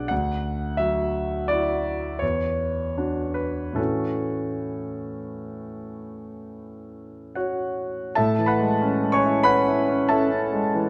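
A clear, natural-sounding concert grand piano opens on a Dadd9 chord, sitting up front with deep bass and long sustain as it drifts through Esus2 and A6 in a rubato 5/4. This serene, dreamy piece of impressionist classical solo piano is heard in a scoring stage with moderate reverb. At 8.2 seconds it settles onto Amaj7 as a new section begins, and this short passage, cut from a longer piece, ends at 10.9 seconds.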